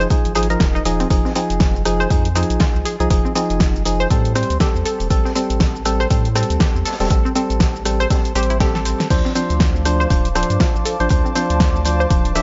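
A swung deep house groove at 120 BPM in 4/4 drives this late-night excerpt, with an electronic kick thumping under a layered, tape-warmed kit of crash, hi-hat, rim click, shaker and a fat snare, while a gritty, very quiet garage kit adds a high-tuned snare and hi-hat beneath. A round analog bass holds the low end with a saturated, sustained tone, pumping against the kick. Up front, a hollow, mellow organ stab punctuates the chords with chorus and dub echo, and an analog pluck spins detuned sawtooth arpeggios in the background, its short decays trailing into delay. The harmony moves from Fm7 to Am7 at 4.1 seconds, and after a drum fill a moody, wave-folded pad enters at 9.1 seconds on Dm7 with a slow attack. The mix sits in light digital ambience with a softened top end, giving the whole a deep, nocturnal feel.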